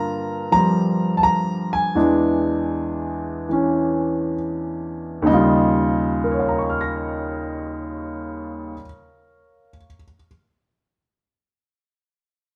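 An upright piano carries this brief solo jazz passage on its own, sounding clear, woody and intimate, with its action noise audible and its long sustain ringing out up front. The mood is swinging and sophisticated, in 4/4 with a swung eighth-note feel, moving between 63 and 88 BPM and slowing down through the first 5.3 seconds. Centred in Eb mixolydian, the harmony passes from Gm7 to E7 before settling on Eb9 as a new section begins at 5.3 seconds. The piano ranges from Eb2 up to Bb6, giving the short fragment both depth and sparkle. A moderate stone room reverb surrounds it with a natural, live sense of space, and the clip is cut from a longer piece, ending at 10.3 seconds.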